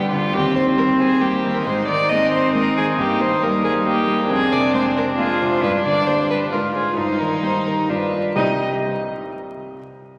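A fragment of a quick, dramatic and stormy classical-period movement for piano quartet in triple time opens with violin, viola, cello and baby grand piano sounding together. The violin carries the melody up front with a warm, pure, floating tone, bowed sul tasto with a soft attack, while the rich cello sings a second line beneath it in the same gentle bowed manner. The dark viola and the clear, polished piano share the accompaniment, the piano sitting present and forward as the harmony moves from Cm/Eb through Ab and Dm7b5/F to a G7 that resolves onto Cm at 8.4 seconds. The three string players stop at 8.6 seconds, leaving the piano to sound alone until 9.8 seconds. A wet church reverb with a long tail surrounds the ensemble, and a layer of vinyl crackle gives the recording an aged surface.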